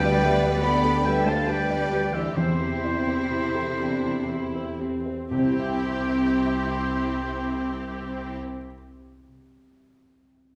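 Moving and uplifting, this cinematic film-score fragment in C major drifts in a rubato 3/4 at 57-76 BPM and slows over its first 5.3 seconds, as a rich, vibrato-laden violin section carries the melody over second lines from a clear oboe, a distant, roomy clarinet and a lush background violin section, with a focused viola section, very quiet French horn chords, a ringing thumb-plucked harp and cello and smooth double bass sections beneath, while a soft felt-muted upright piano holds on after most parts stop at 8.4 seconds and plays alone once the harp stops at 9.2 seconds, the whole ensemble set in a wet recital-hall reverb.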